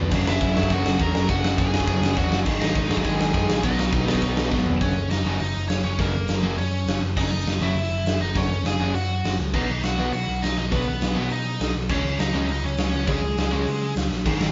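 A punchy, up-front rock drum kit drives this angry, urgent punk rock excerpt at 204 BPM, with a fill at 4.5 seconds tipping the band into a half-time feel from 4.8 seconds to 14.3 seconds. Two overdriven rhythm guitars, a bright cranked stack and a compressed, warm one, play the riff from the background over a growly, amped picked bass, while a biting lead guitar carries the melody above them. The chords move through F#, G#5, B and C#5, and the band sounds as if playing live in one room, with light reverb and a muted top end.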